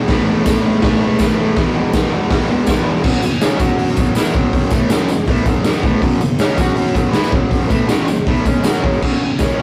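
A straight 4/4 pulse from a punchy, up-front garage drum kit of kick, medium-tuned snare, hi-hat and crash anchors this menacing, raw garage rock fragment, where a double-tracked, compressed fuzz guitar riff moves from A5 and E5 to F# minor at 3.0 seconds and lands on F#5 at 9.0 seconds, a jingly tambourine sits in the background, and the rough rehearsal-room sound carries light reverb and warm saturation.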